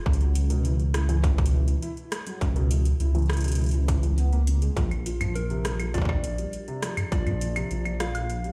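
A dark, detuned sawtooth bass rumbles up front through this melancholic, eerie IDM fragment at 102 BPM, joined by a distorted, overdriven electronic kick until 7.2 seconds, a booming analog drum machine with metallic hats, claves, rim clicks and toms, felt-muted upright piano arpeggios with audible action noise and tape echo, and, from 5.4 seconds, a round, gentle FM synth lead with chorus and delay, all heard moving from D-flat minor to B-flat as if played through a big sound system in a bare stone room.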